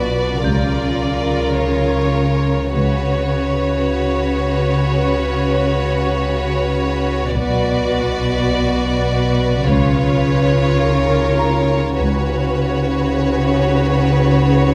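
Mysterious and eerie, this suspense film-score fragment sets a lush, vibrato-rich violin melody against a smooth, up-front second violin line, a dark, distant cello section gliding with portamento, and an expressive double bass section entering at 0.4 s, over a metallic, inharmonic drone thickened with chorus and reverb, while a bell-like, slightly out-of-tune celesta sounds delicately in the background.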